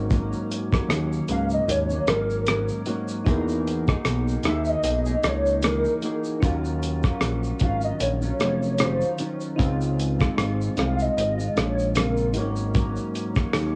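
Laid-back and nostalgic, this bedroom-pop excerpt at 76 BPM with a gentle 16th-note swing pairs a dark, clean, compressed electric guitar with chorus and vibrato, round electric-piano-like synth keys sitting in the background, a fat detuned sawtooth bass with a filter pluck, and a cloth-damped, thuddy kit of kick, hi-hat, rim click and shaker roughened by 12-bit sampler grit, while a warbling lead with chorus and analog delay sings from 1.3 to 12.5 seconds over lush chords moving from Ab9sus4 through Emaj9#11, Ebm9 and Dbmaj7, all bathed in cassette-tape haze and light reverb.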